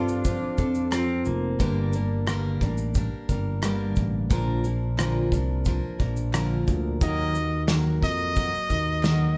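This easy-going, carefree acoustic pop passage opens with a clear, close-miked trumpet, a bright, twangy pedal steel guitar and a woody, full-bodied jumbo acoustic guitar all sounding at once, over a growly, amped fretless electric bass. The tempo sits at a relaxed 89 BPM in straight 4/4 in Bb major, with the chords moving from F to Gm, then Bb, and turning to a darker Ebm near the end. The trumpet, pop style with light vibrato, states a short melodic phrase up front before falling away, and returns at 7.0 seconds. The pedal steel, played with fingerpicks, slide and volume swells and sounding compressed and clean, carries a second line until 2.6 seconds. Throughout, the picked acoustic guitar, warm with old strings, stays prominent while a loose indie kit with a tight kick, medium-tuned snare, rim click and shaker pumps in its small room. Crisp, dry group handclaps, barely audible, join at 0.9 seconds, and a moderate large studio reverb gives the whole band the feel of playing live together in one room.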